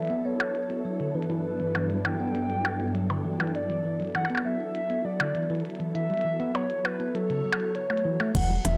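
Cerebral and eerie, this 100 BPM IDM excerpt pairs a warbling, detuned lead carrying a chorused, vibrato-tinged melody with silky string-machine chords under a filter sweep and vintage 12-bit grit, clean tine electric piano arpeggios through delay, and an up-front glitchy drum kit of clicky, low-passed hats and percussion blips re-recorded in a large room, before a round, woody FM bass and a thumpy, pitched-up electronic kick arrive at 8.3 seconds.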